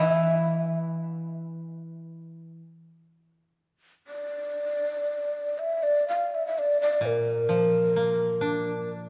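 A breathy, hollow shakuhachi carries the melody up front with a tongued chiff over two fingerpicked kotos, one bright and woody on a brief second line that stops at 2.2 s, the other mellow and dry in the accompaniment, in a still, meditative excerpt of Japanese chamber music in D hirajoshi, rubato around 58-70 BPM, set in a wet concert hall reverb.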